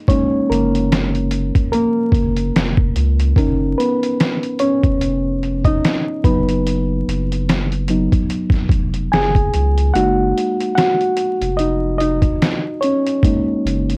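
A reedy electric piano opens this cosy, nostalgic lo-fi hip hop fragment, lightly overdriven and slightly out of tune, as if heard through its own built-in speakers and dulled by cassette tape and a low-pass filter. A trip hop sampler-style drum kit joins almost at once, gritty and pitched down, with a thumpy kick, a medium-tuned snare and hi-hat sitting up front in a gently swung groove. A deep, saturated sub bass with a sine-like body arrives at 0.5 seconds, its notes starting quickly and holding long. The piano carries the lead throughout, moving through lush sixth-nine and major ninth chords and a rootless suspended seventh before returning home at 9.9 seconds, where the kick briefly drops out until 11.6 seconds. The whole mix sits in a light reverb and feels worn, with warbling old tape, a drifting pitch and vinyl crackle, and the passage is cut from a longer piece.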